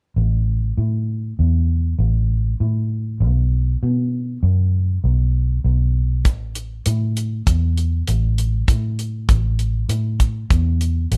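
Progressive instrumental in an uneven 5/4 meter, this driving, tense excerpt opens on a dark, foam-muted electric bass, round and punchy, sitting up front in a dry room. At 6.2 seconds a damped drum kit joins with hi-hat and a tight kick, carrying the straight feel alongside the bass to the cut at 11.2 seconds.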